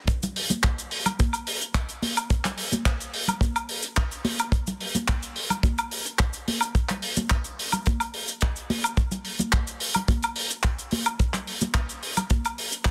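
A dense, heavily limited modern master with light reverb and studio ambience carries this groovy, sleek nu-disco drop at 108 BPM in straight 4/4, cut from a longer piece, as a dry, up-front damped 70s drum kit with cabasa, handclaps, hi-hat and woodblock and a tight, softly clipped acoustic kick with a rolled-off top run from 0.1 to 12.9 seconds, joined at 0.2 seconds by bright, high-tuned congas with thin skins and soft hands, sitting lower in the mix.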